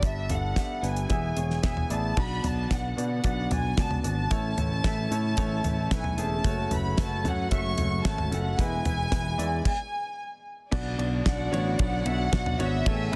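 A dense, heavily limited modern master wraps this hopeful piano-driven pop fragment in light reverb and studio ambience. At 112 BPM in a straight 4/4, tuned to A4 = 436 Hz, a clear, woody upright piano with audible action noise and long sustain carries the accompaniment beneath a studio violin section that sings the melody with light vibrato, sul tasto bowing and a touch of digital delay. Underneath, a round, overdriven picked electric bass and a dry, up-front 70s drum kit with a fat snare, tight kick and rolled-off top drive the groove, moving through G, E, Bm, A and F#m. A dark, lush string section enters very quietly at 2.2 seconds with sustained chords. After a stop at 9.7 seconds, a second violin line with a soft attack and a pure, floating tone joins in the background at 10.7 seconds as the harmony returns to Bm.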